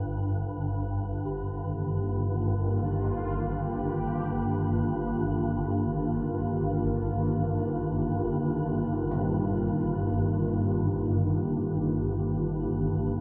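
A swarming, detuned drone sits up front from the opening, its granular, sine-based tone slowly evolving low in the register and trailing its own built-in reverb. This excerpt of dark ambient music drifts in free time and feels vast and ominous, with tension carried in the drone's long, sustained body. The opening G5 sound shifts to Eb at 1.3 s, when a sweeping resonant pad enters with slow-attack sustained chords. The pad is bright and chorused, blending sawtooth and sine with a filter swell, and it shares the foreground with the drone. Beneath them, a very quiet bronze singing bowl rings throughout with a dark, smooth, metallic tone and slow, meditative beating, struck with a wooden striker. From 9.1 s, faint carillon bells add vintage, band-limited arpeggios on a single low pitch from a worn iron clapper, all held in a huge, moderate ambient reverb.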